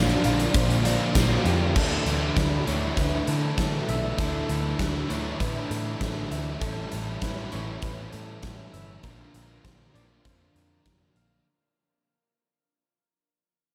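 Up front, a big rock drum kit with a fat snare and punchy kick drives this blissful, hazy shoegaze and dream-pop excerpt, joined by a round, foam-muted vintage bass, three overdriven guitar riffs (one biting and one hollow-body with reverse reverb, both in the background, plus one double-tracked and very quiet until 6.6 s), twangy clean guitar arpeggios with subtle chorus and tape echo, and a brief jingly tambourine at 1.2 s, all soaked in a huge dreamy reverb as the music fades out from 1.8 s.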